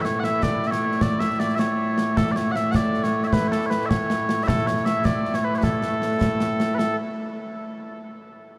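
Small bagpipes and a concert snare and bass drum open together at 0.0 seconds in this short cut from a longer piece of Scottish pipe music, proud and ceremonial in mood. The pipes carry a sweet, continuous solo melody up front, ranging from A2 to F#5 in A major, with a mellow tone and a tuning of A4 = 441 Hz. The drums sit up front with an acoustic, live-room sound and bright cymbals, marking a straight 6/8 at 104 BPM in dotted quarters. Both parts play through to 7.0 seconds, and a new section begins at 6.8 seconds, just before they stop. A huge, wet reverb with a long 7.1-second tail places the listener further back in the room and gives the tune a spacious, stately air.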